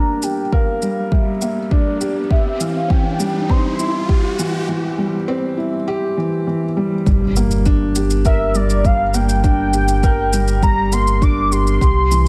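Piano and strings electronica at 101 BPM in G dorian, cinematic and intimate, this excerpt pairs a felt-muted upright piano riff, up front with audible action noise and tape echo, with a velvety, detuned synth lead colored by chorus and cassette tape, over a shaker and a deep electronic kick, while a filter sweep on the lead and a riser build toward a break at 4.7 seconds before an impact and a round analog bass with sidechain pumping arrive on the drop at 7.1 seconds.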